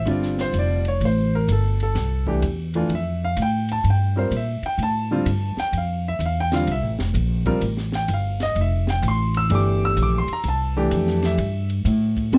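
A swung 4/4 pulse drives this hypnotic, spiritual modal jazz excerpt, which rests on a single Fmaj9 chord from the start. A compact cocktail drum kit sits low in the mix with hi-hat, ride cymbal, punchy kick and a high-tuned snare, its dark, smooth, rolled-off sound placed in a small room. The upright bass is plucked and up front, woody on steel strings in its low register. A concert grand piano accompanies with an intimate, natural tone, deep bass and audible action noise. Only at 12.3 s does a vibraphone with soft mallets enter on a single C4, metallic, mellow and ringing with its motor off, the loudest part, just as the recording is cut. Light reverb and close, detailed microphones keep the sound near and clear.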